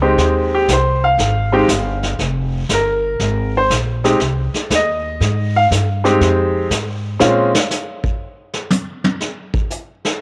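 A bright, brilliant upright piano leads this moody, late-night jazz trio excerpt over a minor-seventh harmony, its present, polished tone carrying a touch of cassette-tape grit. A woody pizzicato upright bass on steel strings sits up front beneath it, while a vintage brush kit of brushed snare, hi-hat, punchy kick and toms adds a warm, rolled-off swing that shares the piano's tape character. Both piano and bass stop at 7.5 seconds, leaving the drums to carry a short solo until 10.1 seconds in a homespun cassette recording bathed in moderate spring reverb.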